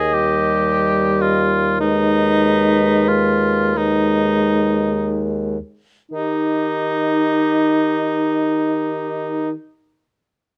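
Tender and lyrical, this short excerpt from a slow romantic classical movement for wind quintet unfolds in a rubato 6/8 in Eb major, at roughly 24-39 dotted-quarter beats per minute, slowing through the first 6.1 seconds as the harmony moves from Eb to Abm/Eb and back to Eb. An oboe with light vibrato sits up front carrying the second line, while a clear French horn with vibrato joins at 0.1 seconds as accompaniment, and a warm, soft-attacked clarinet adds distant, roomy accompaniment in the background. A mellow bassoon with light vibrato and soft attack anchors the bass, all captured by close, detailed microphones with light reverb.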